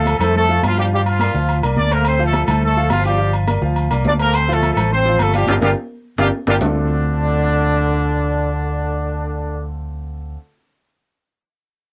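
A vintage horn section with vibrato and octave doubling, given a cassette-tape tint, carries the melody up front from the start over clear grand piano accompaniment and a round, amped fingered electric bass in this driving, fiery salsa excerpt at 210 BPM in D minor, which moves between Dm7 and Gm7 while ringing, compressed and saturated metal-shell agogo bells and timbales and soft-handed, high-tuned congas in the background push the groove until a band accent at 5.5 seconds, a drum fill at 6.0 seconds and the percussion dropping out at 6.7 seconds, all within a small booth-like room on a homemade cassette recording.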